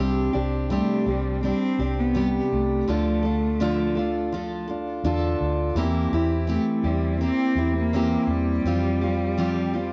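Easy-going and heartfelt, this brief acoustic pop excerpt in C major moves at a straight 83 BPM in 4/4, with an up-front, full-bodied picked steel-string acoustic guitar carrying the chords through Csus2, Dm, C7/E and Fsus2 alongside a dark, round, foam-muted vintage electric bass, while a rich bowed cello enters at 0.7 seconds with expressive vibrato and portamento, the guitar and cello both colored by cassette tape in a homespun room softened by moderate spring reverb.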